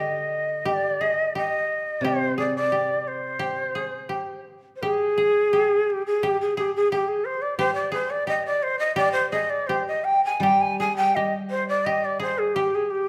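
Loosely rubato in 2/4 at around 86 BPM, this cut from a longer piece of Japanese traditional chamber music feels solitary and austere. A breathy bamboo shakuhachi carries the melody from G4 up to Ab5, sitting up front with tongued, chiff-tinged attacks, a gentle vibrato, an unsteady quality and a faintly distant air. Alongside it, one koto plucked with fingerpicks plays a dry, woody second line in a narrow band from G4 to Ab4. A second, mellower koto adds low accompaniment between C3 and G3, dropping out at 4.1 s shortly before the music moves into a new section at 4.8 s, then returning at 10.4 s. A moderate scoring-stage reverb and a dark, warm production give the sparse ensemble a shadowed, austere space.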